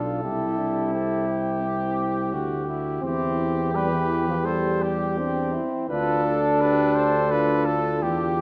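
Noble and stately, this short classical brass quintet excerpt moves at 85 BPM in a straight 4/4, settling into C major from 3.0 s as the harmony passes from C through C/E to Dm. The trumpet carries the melody with light vibrato, joined by a distant, roomy flugelhorn on a second line, while a mellow, punchy trombone and a soft-attacked, vintage-toned French horn fill in the accompaniment. Underneath, an up-front tuba with a gentle attack anchors the bass, and all five parts play together throughout, set in a moderate scoring-stage reverb.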